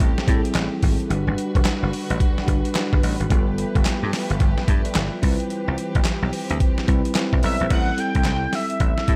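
Flirty and bouncy, this short cut from a longer new jack swing R&B track moves at 109 BPM in 4/4 with a swung sixteenth-note feel in G major. A gritty, compressed sampler-style drum kit sits up front, its pitched-down sound carrying a thumpy kick, a medium-tuned snare, handclaps, hi-hat and crash cymbal. A dry, punchy thumbed slap bass, foam-muted and direct, anchors the low end alongside a bell-like tine electric piano whose clean accompaniment runs throughout and adds a fill from 6.6 to 7.7 seconds. A soft-attack studio string section, bowed sul tasto with vibrato and a smooth top, holds sustained chords through the Am7, Gmaj7, G9 and Cmaj7 changes until 7.7 seconds. At 7.5 seconds a bold, retro octave-doubled sawtooth lead with a detuned, filter-plucked edge, chorus and vibrato takes the melody just before the music returns to Am7. The mix carries little reverb, keeping the groove tight.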